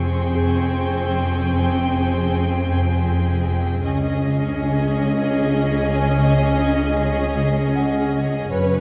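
A worn, warbling cassette-tape quality with drifting pitch colours this short cinematic excerpt, set in a wet scoring-stage reverb that lingers for about two seconds. The mood is uneasy and ominous, moving at a slow 77 BPM in 3/4 from Fmadd9 to C#sus2 at 3.9 seconds. A focused, distant violin section carries the bowed melody with vibrato, while a smooth, even, close violin section plays a second line beneath it. A rich viola section supplies expressive accompaniment with portamento, and a buzzing marimba played with soft mallets repeats a dry, round, dark riff in its low register. Underneath, a lush, close cello section and a woody double bass section in the background hold the bass. A delicate, tinkling music box, slightly out of tune, sounds faintly from the opening until 2.6 seconds and returns near the end, while a soft-attack high violin texture floats at the top until 3.4 seconds and returns briefly in the final moments.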